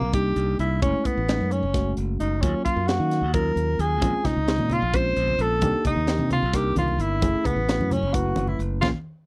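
Electric jazz fusion in a slick, intense 7/8 at 262 BPM, where a roomy tenor saxophone with light vibrato and scooped notes carries the melody up front over a growly, bright fingered bass, a worn, slightly out-of-tune electric piano lightly overdriven through its built-in speakers, a tight funk drum kit with a high-tuned snare, and low-tuned congas entering in the background at 4.0 seconds, all moving through minor ninth chords such as Cm9, Gbm9 and Bbm9 in a dry, close 1970s-style studio sound before a band accent at 8.8 seconds closes this cut from a longer piece.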